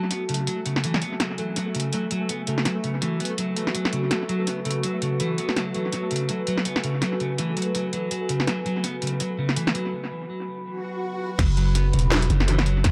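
A deep, detuned ambient pad with 12-bit sampler grit and sidechain pumping opens this spacious, tense half-time drum and bass excerpt in F# minor at 165 BPM, alongside dark, clean picked electric guitar arpeggios through tape echo, a pulsing, tempo-synced gated texture and an up-front drum kit with cracking snare, metallic hats and analog delay. The texture falls away at 9.9 s for a break, an electronic swell comes in at 10.7 s, and a growling, buzzy 808-style bass and tight electronic kick land with the drop at 11.4 s.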